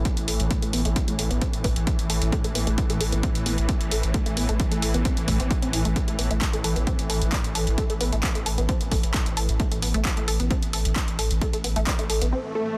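A dense, heavily limited modern master set in a digital ambience gives this short cut from a longer piece of driving peak-time techno a dark, intense edge at 132 BPM in a straight 4/4, sitting on an A5 chord. An overdriven electronic kick and a punchy analog drum machine with handclaps and hi-hats, both re-recorded in a large room, push the groove, with sidechain pumping on the hats. Underneath, a deep, thick sine sub bass sits on A1 with overdrive, a low-pass filter and pumping, while a swarming, tense drone of detuned granular unison voices evolves between A2 and E3 in its own reverb. A juicy, squelchy pluck with resonant filtering, ring modulation and phaser spans A3 to A4 as the riff, its tube saturation and dub echo adding grit and depth. At 12.4 s an up-front electronic swell arrives to close the passage.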